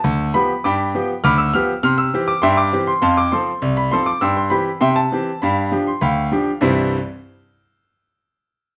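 A straight, even 2/4 pulse at 100 BPM drives this playful, lively ragtime piano passage in C major, cut from a longer piece. A solo concert grand carries the whole performance from 0.0 to 7.0 seconds, ranging from C2 up to F6, with a brilliant, polished top, deep bass and a short sustain that keeps each note crisp and present. The harmony moves from G7 to C, then through F and C/G before returning to G7, and a new section opens at 6.6 seconds as the music settles onto C. The studio reverb is wet, and the room is heard from further back, giving the crisp piano a sense of space around it.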